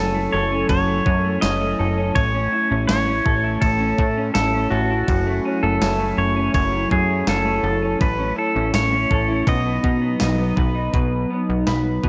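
A bright, twangy pedal steel guitar carries the slide melody up front with delay and volume swells, floating over a dream pop bed until it drops out at 10.5 seconds. Beneath it, a hollow, flute-like pad holds dark sustained chords with chorus, while an electric guitar through a small old amp picks slightly broken-up, lo-fi arpeggios with analog chorus and delay. A punchy, plucky analog bass and a clean 12-bit drum machine with a thumpy kick and tambourine, entering at 0.7 seconds, give this blissful fragment of a longer piece its pulse, all set in a moderate concert hall reverb.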